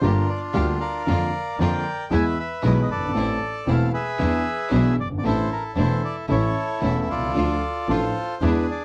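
Passionate and melancholic, this brief tango passage moves with a rubato feel, its reedy, dark bandoneon carrying the melody up front over a polished baby grand piano accompaniment. A bowed double bass with a biting, earthy tone and light vibrato anchors the low end, while a rich chamber string section adds smooth-topped stabs in the background. Light reverb rounds out the dark, warm production as the harmony settles onto D minor at 7.4 seconds.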